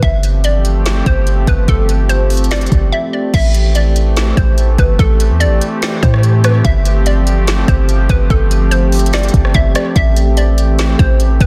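A half-time cloud-rap groove at 145 BPM in A minor opens with a hollow, bouncy square-wave pluck carrying the melody, trailed by chorus and delay, over a warbling, nostalgic lo-fi pad that holds sustained chords with chorus, reverb and sidechain pumping. Beneath them, a deep, boomy 808-style bass sits up front beside a smooth R&B kit of soft kick, woody snare, rim click, hi-hats and crash, its tape-warm sound re-recorded in a large room. The harmony moves between G9sus4 and Am7, and digital ambience with a dense, heavily limited master gives this melancholic, spacious fragment a polished finish.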